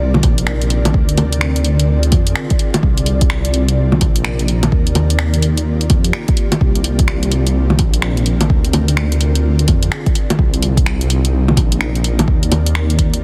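A swung 4/4 groove at 127 BPM drives this wistful, melancholic future garage excerpt in C minor, where a deep, up-front electronic kick and a tape-warm, layered garage kit of bongos, finger snaps, hi-hat and a softly clipped snare sit over a dark, rumbling detuned saw bass and an ethereal, mellow pad with ensemble chorus and built-in reverb, both pumping to the sidechain through chords of Cm9, Dm7b5 and Ebmaj7, all under light reverb, vinyl crackle and a dense, heavily limited master.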